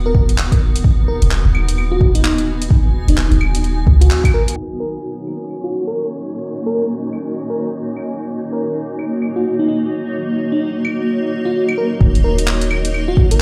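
Future garage at 129 BPM in Eb minor, with a swung 16th-note feel and a nocturnal, ghostly mood, cut from a longer piece. A blurred, granular cloud pad holds sustained chords throughout, pumping against the sidechain, while a bell-like FM electric piano carries a narrow melody with chorus, tremolo, cassette-tape colour and dub echo. A round, sine-like 808-style bass and an overdriven, up-front electronic kick drive the opening until a band accent at 4.1 seconds, then drop out as a filter sweep runs across the drums and pad from 4.6 to 12.0 seconds, the harmony settling from B/D# onto Ebm7. During that stretch an airy, wind-like tuned noise texture breathes in the background, and the deep house kit's claves, handclaps and hi-hat continue, muffled by low-pass filtering. Bass and kick return at 12.0 seconds for the closing passage, all set in a large, reverberant room that sounds like a big sound system playing into bare walls.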